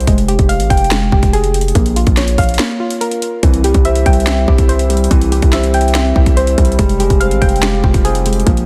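A dense, heavily limited and nearly dry mix carries this eerie, dark half-time trap excerpt, where a soft, round, wave-folded pluck with chorus and delay spins arpeggios over punchy sine 808 bass and up-front, tape-toned drums with a hard-clipped kick, sharp snare, metallic hats and finger snaps, reaching a break at 2.6 seconds before a mellow, deep concert grand piano joins at 3.4 seconds as the harmony moves from Fmadd9 through Bbm to C and back.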